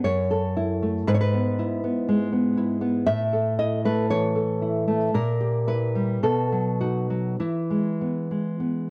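A romantic solo classical guitar piece in a slow, rubato 2/4, with a nostalgic mood that drifts freely in time. The nylon-string guitar sits up front with a warm, thumb-plucked tone, its chords moving through a progression that settles onto the home chord near 7.4 seconds. The sound carries a moderate spring reverb and small room ambience, coloured by worn cassette tape with a warbly pitch drift, and this brief excerpt is cut from a longer piece.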